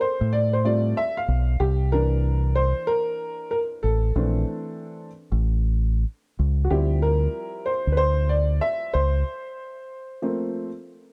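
A dark baby grand piano opens this nocturnal, mellow hip hop excerpt, its boxy, worn tone close and intimate, with audible action noise and short sustain. A deep dub fingered electric bass joins at 0.2 seconds, round and direct, sitting up front beneath the keys. At 94 BPM in 4/4 with a swung sixteenth feel, the groove moves through jazzy harmony, from G9sus4 to C9, a rootless Bbmaj9#11 and Dm11. The bass drops out at 9.2 seconds for a break, and the piano settles on Fadd11 before stopping at 10.7 seconds. Light reverb and a dark, warm production keep the whole fragment late-night in character.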